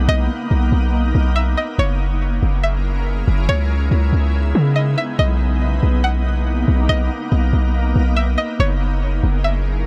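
Half-time hip hop with a floating, blissful mood, this short cut from a longer piece rests on a deep, boomy 808-style bass sitting up front beneath a shimmering ambient pad of ethereal, detuned chords with slow attack, chorus and its own reverb. A twangy, string-like resonator pluck carries the melody in a high register, its full-bodied tone given chorus and tape echo. The harmony moves from Bmaj7 through F#7 and C#m9 before returning, all in a light digital ambience.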